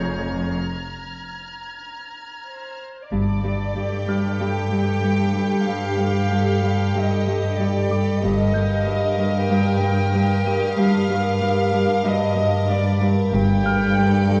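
At a straight 94 BPM in 4/4, this uneasy, tense suspense film cue opens in F minor. A muted chamber violin section briefly holds a second line over veiled cellos and lush muted double basses, while a mellow concert harp rings in the background and a soft-edged studio violin section hovers high above. Through a break, another muted chamber violin section takes up the melody from 2.5 s, and at 3.1 s the music turns to G minor as a Celtic harp begins a ringing fingerpicked riff on G, with an icy, crystalline glass pad with chorus and built-in reverb adding sustained chords from 3.8 s; the dark production sits in a reverberant scoring stage, with the cellos up front and the basses returning only in brief bursts.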